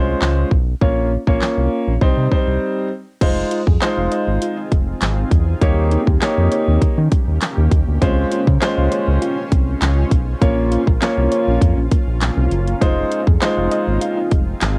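Dance-pop with an energetic, driving feel, cut from a longer piece: a natural-sounding concert grand piano with deep low end and a round, dark analog bass both pump under sidechain from the start, while an up-front electronic drum kit brings a punchy kick, fat snare, metallic hi-hats, handclaps and crash cymbal. After a brief break at 2.6 seconds, a very quiet, soft pluck with chorus adds gentle arpeggios from 3.2 seconds, and a cloudy, evolving granular pad with its own reverb drifts in the background from 4.2 seconds. Piano, drums and pad carry a cassette-tape character, and the whole home recording sits in light reverb over chords such as Fm7, Eb7 and Dbmaj7.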